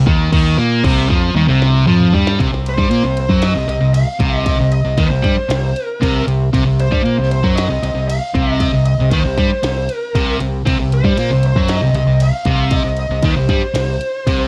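Aggressive and driving, this hard rock cut from a longer piece pushes along at 116 BPM in C minor, with a sludgy, double-tracked distorted guitar riff up front over a growling, punchy fingered bass and a glitchy electronic drum kit with a deep kick and tiny snare, which plays a fill from 1.4 to 2.4 seconds before a smooth overdriven lead guitar enters at 2.7 seconds, all captured in a home cassette recording with light reverb.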